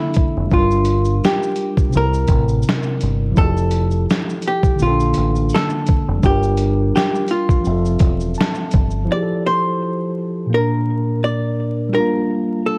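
A dark, hollow-body archtop guitar picks a clean, compressed melody over a tine electric piano that sounds warm through its built-in speakers and carries a cassette-tape tint, opening this dreamy, nostalgic lo-fi hip hop excerpt in F major at 84 BPM with a swung 16th feel. A gritty, 12-bit sampler-style drum kit with a thumpy kick, fat snare, hi-hat, shaker and finger snaps sits up front in a large-room sound beside a round, deep dub fingered bass. The piano plays a short fill at 8.0 seconds before drums and bass drop out at 9.1 seconds, and light reverb, vinyl crackle and worn, warbling tape drift colour the whole mix.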